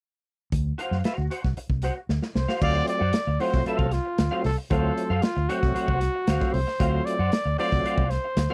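A dark, breathy trumpet enters at 2.4 seconds with an intimate, whispered jazz melody over a playful 115 BPM funk groove in D mixolydian, built on a round, foam-muted fingered electric bass and a gritty, saturated breakbeat drum kit from 0.5 seconds, a twangy, slightly broken-up electric guitar, and a fat, lightly overdriven tonewheel organ whose percussive stabs with key click and slow rotary speaker arrive at 2.6 seconds, the whole caught in a dry, close 1970s-style studio sound.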